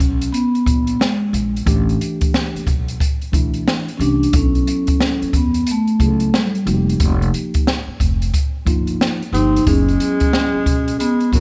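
A relaxed jazz-hop groove opens with soft-mallet vibraphone carrying the melody over pizzicato upright bass and an open acoustic drum kit. The vibraphone rings with a metallic yet mellow glow. The bass sounds woody, dark and thumpy on gut strings, and the up-front kit pairs a boomy kick with a high-tuned snare and hi-hat in a swung sixteenth-note pocket. At 1.7 seconds a clean tine electric piano enters quietly through its built-in speakers, adding warm accompaniment under a chain of suspended ninth chords. At 9.3 seconds a breathy tenor saxophone slips in as a second line, with light vibrato, scooped notes and a smooth top in a jazz solo style. The dry, close sound keeps this short passage, cut from a longer piece, intimate and unhurried.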